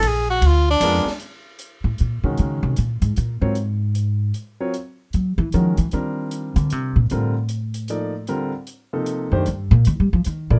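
Modal jazz in a swinging 3/4 with a spiritual, hypnotic mood, this excerpt opens on a brief, soft-attacked tenor saxophone line with vibrato that lasts only until 1.1 seconds before the upright bass takes over as soloist. The woody, pizzicato bass stands up front through the rest of the clip, while an intimate grand piano with audible action noise and short sustain comps from 0.8 seconds and an acoustic drum kit with a high-tuned snare sits low beneath on hi-hat, ride and snare. The harmony moves from an altered Bb7b9 into suspended dominant chords in light reverb.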